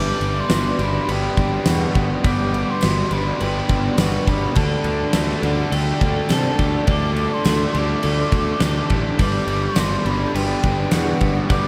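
Shoegaze-tinged dream pop rock at 104 BPM in G major, this wistful, hazy cut drifts from Gmaj7 to Dsus4 and back, with an airy silver concert flute carrying the melody through tape echo over a deep, detuned analog pad with chorus and a bright, twangy twelve-string electric guitar picking arpeggios in the background. A growly fuzz bass sits loud in the mix beside a huge arena drum kit with a fat snare and punchy kick, while three picked guitar riffs fill the middle: a biting overdriven part bathed in reverse reverb, a quieter double-tracked overdriven part, and a thick, dark fuzz line. A jingly tambourine glimmers far back from 0.5 to 11.1 seconds, and the whole mix is soaked in a vast, dreamy reverb tail.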